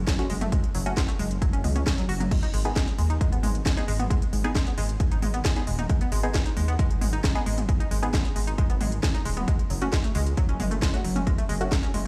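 Dark and driving, this 134 BPM peak-time techno excerpt in G# phrygian rides a rumbling, detuned saw bass that pumps against an overdriven, up-front kick and a layered kit of crash, smooth hats, cracking snare and toms. A round analog pluck riff with chorus, overdrive, 12-bit sampler grit and delay plays over G#m and F#m chords, while a muted dub chord stab with phaser and delay sits farther back, all played through a big sound system in a bare stone room.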